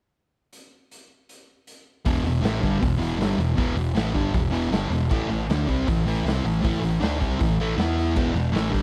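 A straight 4/4 pulse at 157 BPM opens this raw, rowdy garage rock clip, with a gritty, punchy drum kit of kick, medium-tuned snare, hi-hat and crash playing alone from 0.5 seconds until a thick, double-tracked fuzz guitar riff sits up front and a round, overdriven fingered bass joins at 2.1 seconds, moving through E5 and A5 chords under light reverb until the cut at 8.8 seconds.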